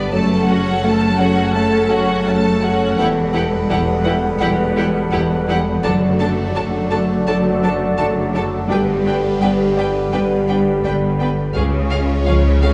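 A futuristic, relentless cue from a hybrid orchestral and electronic film score, cut from a longer piece, opens with the full string body at once. Lush bowed violins carry a smooth, vibrato-rich melody up high, a second violin line sits in the background, and focused violas fill in the accompaniment. Underneath, cellos, double basses and a deep, mellow sine sub bass with an octave layer anchor the bass, while a swirling, detuned analog pad with phaser and chorus holds bright, evolving chords alongside a very quiet, dark trombone section. From 0.1 seconds, a distant, soft-attack French horn section adds sustained chords, and a very quiet, woody wave-folded pluck with a warbling, vintage character ticks out arpeggios. The harmony moves from F#m through Emadd9, D/F# and G before landing on C# near 11.6 seconds, and a moderate scoring-stage reverb lends the ensemble a roomy sense of space.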